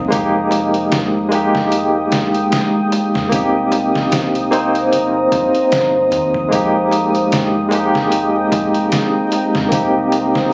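Brooding and cinematic, this trip hop excerpt sways in a lightly swung groove over Fm11 and Cm7 chords, with a bright, barky tine electric piano accompanying up front with tremolo and tape echo, above a deep, moody pad with chorus and a round, dark fingered bass sitting in the background. A muffled, pitched-down sampler-style kit with a thumpy kick and compressed, tape-warm tone carries the beat alongside a very quiet, close and dry clay-shell darbuka, and at 8.4 seconds a tense, string-like bowed drone creeps in with vibrato. The sound carries a phone-in-the-room feel, with studio ambience, light reverb and vinyl crackle.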